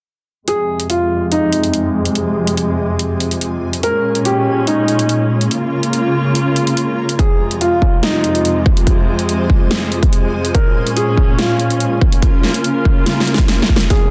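Dense and heavily limited under light reverb, this menacing, heavy wobble dubstep excerpt at 143 BPM in a half-time F minor feel sets a dark, mellow baby grand piano melody with tape echo over veiled, muted studio strings holding sustained chords through a low-pass filter sweep and sidechain pumping, while big-room dance drums with a huge snare and metallic hi-hats drive from 0.5 seconds, a cloudy granular pad fades in behind from 2.0 seconds, a punchy layered electronic kick joins at 7.2 seconds, and a drum fill leads to a barely audible riser at the close.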